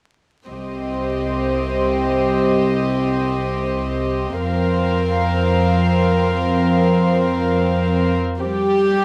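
Cinematic, emotional film score with a longing, moving mood, cut from a longer piece, in which three bowed string sections enter together at 0.5 s and play until 9.0 s: a pure, floating violin section on a second line, a rich, up-front viola section carrying the accompaniment, and a warm, distant-sounding cello section holding the bass, all with soft attacks and a sul tasto touch, captured by close, detailed microphones in a moderate recital hall reverb beneath a layer of vinyl crackle.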